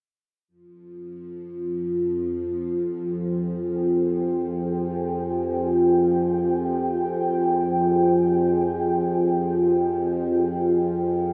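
Swamped in a huge, wet reverb with a very long tail, this unsettling dark ambient drone hangs in free time on a single F minor chord. A resonant, sawtooth-edged drone with moving overtones fades in low at 1.0 s, and at 2.2 s a deep, moody pad of detuned unison voices, sub octave, wave-folding and ring modulation blooms slowly above it. The pad's chords sit mellow and warm, with both parts chorused and held up front until the cut at 11.3 s.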